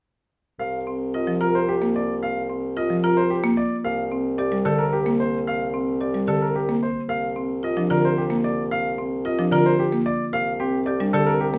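In a moderate large studio room, this urgent yet meditative minimalist classical pattern piece in 3/4 sets a clear, natural baby grand piano carrying the melody up front over a mellow, distant bassoon holding a low C with light vibrato, while a woody rosewood marimba with medium hard mallets spins arpeggios and a buzzing, dry hardwood marimba with medium mallets adds accompaniment, the harmony resting unharmonized before settling on Csus2 at 7.1 seconds.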